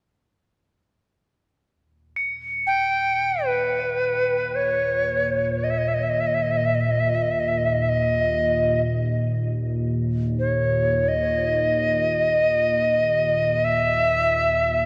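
Unfolding in free time, this haunting, spacious piece of world meditation music drifts along with the sense of a passage lifted from a longer work. Crotales appear first at 2.2 seconds, struck with hard rubber mallets, sitting in the background with a high, shimmering, bell-like ring that stays mellow and soft inside a boxy small room. A Native American-style cedar flute enters at 2.7 seconds and carries the melody up front, its airy, reedy wood tone bright and tongued, shaded by vibrato and trailed by tape echo. Beneath it, from 3.3 seconds, a deep, moody ambient pad holds a low drone, its detuned sawtooth and sine layers, sub octave, slow attack and long release thickened by chorus and its own built-in reverb. The whole mix sits in a huge, wet reverb with a 4.2-second tail and carries the worn, warbling pitch drift of old cassette tape, lending the haunting mood a faded, dreamlike cast.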